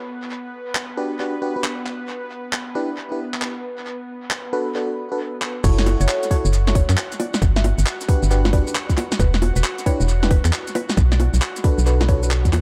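An echo-heavy mix with light reverb frames this late-night, skippy slice of two-step UK garage in B minor, moving at 135 BPM with a strong swing on the sixteenths. A smooth, detuned sawtooth pad opens the piece with sustained chords, carrying chorus, tremolo and sidechain pumping beneath the rest. It is soon joined by a garage kit of cracking snare, crisp hats, handclaps, shaker, bongos and crash cymbal, dressed in dub echo, along with glassy, bell-like FM electric piano stabs treated with chorus and tape echo. Chords cycle through Gmaj7, Em7 and Bm7 to F#m7. After a drum fill at 5.4 seconds, the drop lands at 5.6 seconds, bringing in a tight, tape-warm electronic kick and a hollow, dark, organ-like FM bass, both placed up front. At the same moment a woody, round mallet-like pluck carries the melody in the background, its mellow tone colored by chorus, phaser and tape echo, and the passage runs on as a cut from a longer piece.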